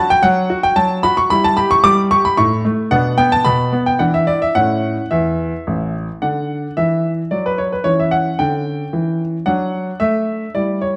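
A clear, intimate baby grand piano plays alone from the first second, its audible action noise and natural, up-front tone set in a moderate recital hall with a dark production, carrying a playful, elegant classical-period sonatina in a straight triple metre across a range from A1 to D6, its opening phrase giving way at 6.2 seconds to a second passage that moves through a diminished chord before the cut at 11.0 seconds.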